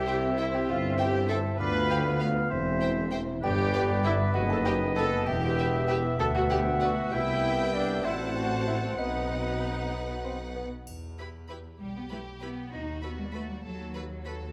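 A straight 6/8 pulse carries this sneaky, mischievous cinematic cue, cut from a longer piece, in which a delicate, tinkling, slightly out-of-tune music box and an intense violin section share the melody over a second line of hollow silver flute, clear clarinet, oboe and an expressive violin section, with bassoon and smooth violas as accompaniment, mellow French horn chords, and a bass of focused double basses, cellos and tuba, all in concert hall reverb until the winds, horns and music box stop around 10.6 s and a dry triangle sounds at 10.9 s beneath the strings.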